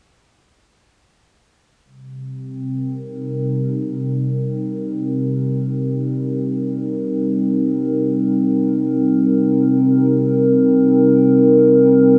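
In free time, this reflective, spacious ambient piece in C minor is cut from a longer work and rests on a single Cm7 chord from 1.8 seconds onward. A warbly, tape-like pad enters at 1.9 seconds, holding sustained chords between C3 and Bb4. Its detuned square and triangle tones, wave-folded and softened by a slow attack, give it a dark, lo-fi, nostalgic character, with chorus and its own reverb; it sits up front in the mix. At 2.2 seconds an analog drone joins beneath it between C3 and G3, a softer, evolving layer of sawtooth and pulse waves with pulse-width modulation, a slow attack, a long release and chorus. Both parts carry on to the end at 12.2 seconds. The whole piece is bathed in a vast, echoing cathedral reverb over a small-room ambience, so every chord hangs in the air long after it sounds.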